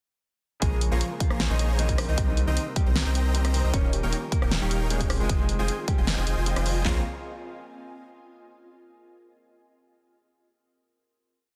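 A dense, heavily limited modern master with little reverb frames this bittersweet, lush future bass piece, which launches straight into a half-time drop at 0.6 seconds and settles on a final chord at 6.9 seconds. Two layered electronic drum kits sit up front with a punchy kick, huge snare, handclaps, toms, rim clicks and hi-hat rolls, while a deep, saturated sine sub bass follows the chord rhythm with sidechain pumping. A thick, detuned supersaw carries a rhythmic chord riff in spread voicing with vibrato, sidechain pumping and tape echo. A dark, clean, fingered electric guitar plays a repeating melody in octaves with the same pumping and echo. Behind them, an intimate grand piano with audible action noise holds rootless chords with syncopated pushes, also pumping and echoed. A very quiet, thumb-plucked harp rings through a six-step arpeggio loop that drifts against the bar, and from 1.8 seconds an ethereal, airy pad with phaser and ensemble chorus sustains chords across a progression of Bbm7, Cm7, Eb9 and Fm7.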